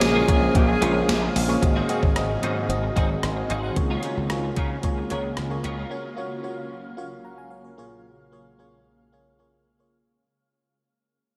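A gated digital drum machine sits up front with a thumpy kick and a gated-reverb snare alongside a gritty, overdriven slap bass in this nostalgic, uplifting 1980s-style pop excerpt at 112 BPM in 4/4. A bright alto saxophone with vibrato plays only a brief melody through 1.3 seconds, while a glassy, bell-like FM electric piano with chorus and phaser and a shimmering, ethereal pad carry the Bbm7, Ab7, Db6 and Gbmaj7 chords, and a twangy twelve-string electric guitar riff with ensemble chorus and delay runs until 5.9 seconds. The drums and bass stop at 5.8 seconds, and the dreamy mix, soaked in a huge 8.8-second reverb, fades out from 1.6 seconds to the end at 10.2 seconds.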